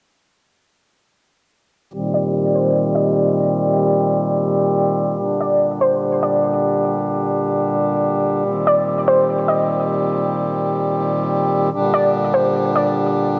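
A reedy, breathing pedal harmonium opens at 1.9 s with full, close, up-front sustained chords moving between Cm7 and Gm, setting a melancholic, ethereal mood in this half-time hip hop excerpt. Moments later a warbling, lo-fi pluck carries a high, nasal melody, its fast attack decaying through chorus, tape echo and a filter sweep. A lush hall reverb surrounds the piece until the harmonium stops at 13.4 s.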